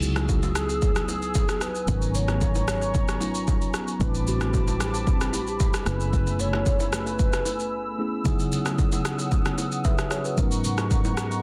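All six parts sound together from the start of this soulful, hypnotic amapiano excerpt at 113 BPM in C# minor: an up-front deep house kit with a deep kick, rim click, shaker and softly clipped snare, a punchy foam-muted fingered bass, a mellow tine electric piano, a hollow flute-like pad pumping under sidechain, faint band-limited congas and bongos, and a woody clarinet-like synth lead carrying the melody through chorus, phaser and tape echo. Minor eleventh chords drift beneath, from C#m11 through G#m11, Am11 and F#m11, until a brief break at 7.7 seconds. The lead and bass drop out around 8.0 seconds, leaving the keys, pad, drums and hand percussion to return to C#m11 and G#m11 in a dry, dense, heavily limited mix.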